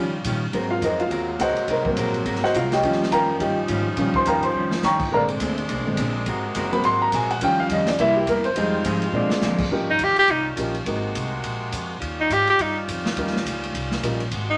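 Brassy and energetic, this big band swing excerpt in Eb mixolydian moves at 209 BPM with a 60% swing, as an up-front, warm baby grand piano solos over a dark, clean hollow-body jazz guitar, clear saxophone-section chords with light vibrato, a woody pizzicato upright bass and a polished drum kit with dark cymbals and drum fills at 4.5 and 9.1 seconds, until the guitar drops out and a bright, scooping alto saxophone takes the lead at 9.9 seconds, all set in wet studio reverb.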